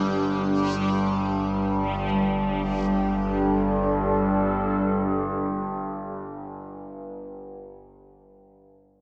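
Dark and desolate, this free-time dark ambient drone excerpt, tuned to A4 = 436 Hz, sets a resonant, overtone-sweeping low drone under a detuned, filter-swelling pad of sustained chords on G5, while a reversed, granular, bright texture swells until 2.7 seconds, all soaked in a lush hall reverb.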